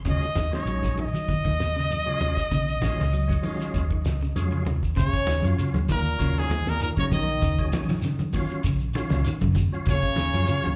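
Heard through a club PA with a small room's reverb, this funky, defiant afrobeat fragment in Eb minor moves at 98 BPM with a light sixteenth-note swing, as a bright, up-front trumpet with scooped notes and vibrato leads over a round, punchy foam-muted electric bass, a dry, fat-snared 70s drum kit, ringing congas and a grainy shekere, a slightly broken-up electric guitar plays arpeggios in the background, a thick tonewheel organ with key click, overdrive, chorus vibrato and fast rotary speaker comps on Ebm11, and at 5.0 seconds the harmony shifts to Ebm9 as a veiled bucket-muted trombone and a soft, distant cup-muted trombone section enter with a second line.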